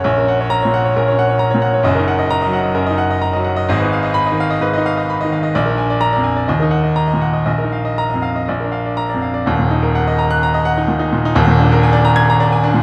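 Classical virtuoso piano study in an agitated, passionate mood, played with rubato in 4/4 by a solo baby grand across a span from Eb1 to Ab6 over these 12.8 seconds cut from a longer piece. The instrument sits up front with an intimate, natural tone, long sustain and audible action noise, set in a recital hall's wet reverb within a dark production. Harmonies move from F#/A# through Fm7b5/Ab and Bb7 to settle on Ebm at 6.5 seconds, and a new section begins at 9.5 seconds and closes on Bb7/Eb.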